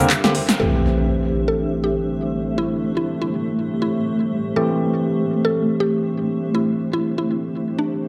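A barky, gritty tine electric piano sits up front through a combo amp, stabbing chords under a low-pass filter sweep from 0.6 s while analog delay trails each hit, in this late-night, hypnotic deep house excerpt at 121 BPM in A minor with a 16th-note swing. A punchy, overdriven drum kit with metallic hats, cabasa and handclaps plays from the start and closes with a short fill that ends at 0.6 s. An electronic impact then lands alongside a woody, round mallet-like pluck melody treated with chorus and phaser, over a cloudy, evolving granular pad and a very quiet, moody analog pad, all steeped in an echo-heavy spring-reverb ambience.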